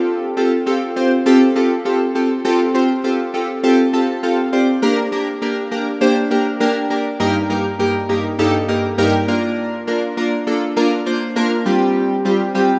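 A lush hall reverb with a long 2.4-second tail washes over this rough home demo, where a small room's ambience sits beneath the sound. It is a summery, carefree pop passage cut from a longer piece, moving at 101 BPM in a straight 4/4. A chorused retro synth keys part plays solo for the whole 12.7 seconds, spanning G2 to A5. Its glossy, bright tone blends pulse-wave and detuned sawtooth colours, with pulse-width modulation, a filter sweep, fast attacks with decaying notes, and dub echo, all placed up front. The keys add a fill from 3.6 to 4.8 seconds before the harmony shifts from Fadd9 to Gm, then moves through Eb/G and Bb before settling on Fsus2 at 11.7 seconds.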